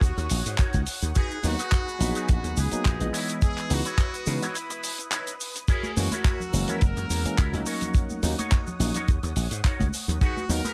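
A small room's reverb frames this short, groovy nu-disco cut, moving at 106 BPM in 4/4 with a light 16th-note swing and a feel-good lift. Up front, a tight, dry acoustic kick and a punchy, foam-muted thumbed slap bass anchor the groove, joined by a damped 70s kit with a rolled-off top, playing crash cymbal, handclaps, hi-hat and shaker. A brilliant trumpet section carries the melody with light vibrato and tape echo, while a twangy, picked electric guitar through an envelope filter and ensemble chorus plays a riff. In the background, a lush, thick, detuned unison pad holds sustained chords with chorus, phaser and sidechain pumping, and a bright tine electric piano enters at 1.4 seconds with pumping accompaniment of its own. After a brief break from 4.6 seconds, soft-handed cabasa and congas join at 5.7 seconds as the harmony moves through chords such as D#m7, C#m9 and F#7.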